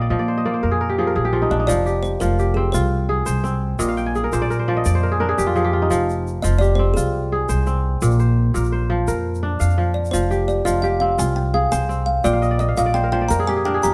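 A mellow, ringing kora sits up front, fingerpicking crisp arpeggios and fills through this hypnotic, flowing West African traditional string and xylophone piece in a straight 12/8, with an up-front pizzicato upright bass, steel-strung and woody, anchoring the low end. A dry, close-miked kalimba adds short, full thumbnail-plucked melody lines, first at 1.5 seconds and again from 6.4 seconds, while a grainy, bright egg shaker joins quietly at 1.7 seconds as the harmony sways between Fm and Bb. The band plays live together in a moderate stone room whose reverb gives the kora and bass a natural glow, and the passage is cut from a longer piece.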